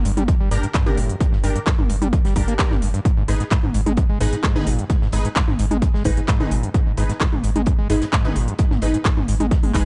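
The recording is dry and gritty, with a digital ambience and a top end that stops at 10.7 kHz. This excerpt of driving peak-time techno runs at 130 BPM in straight 4/4, intense and hypnotic, moving from G minor to A-flat minor at 3.1 seconds. A heavy, layered electronic kick sits up front from 0.3 seconds, over a deep, thick triangle sub bass shaped by tube saturation, a low-pass filter and sidechain pumping. A squelchy, resonant sawtooth acid line screams through distortion, chorus, pumping and tape echo, its filter plucks striking fast and then decaying. Meanwhile, a detuned unison rave stab adds bright hits with a filter sweep, sub octave, phaser, built-in reverb, tape echo, pumping and a cassette-tape tint. The techno drum kit brings handclaps, smooth hi-hats and toms, tape-toned and re-recorded in a small room, with pumping on the hats and toms, while a very quiet, cloth-damped acoustic kit adds a fat snare and hi-hat with a rolled-off top.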